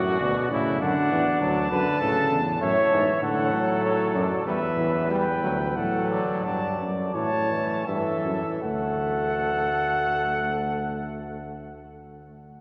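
Joyful and lively, this brief classical brass canzona excerpt in D major moves at 76-100 BPM in 4/4 and slows from 2.0 to 8.6 seconds, with a mellow cornet carrying the melody from 0.2 seconds over a warm flugelhorn second line, a bright trombone with vibrato in accompaniment, and a punchy bass trombone underneath, the cornet and flugelhorn up front with light vibrato and soft attacks, all heard from further back in a cathedral reverb that lingers for 5.1 seconds.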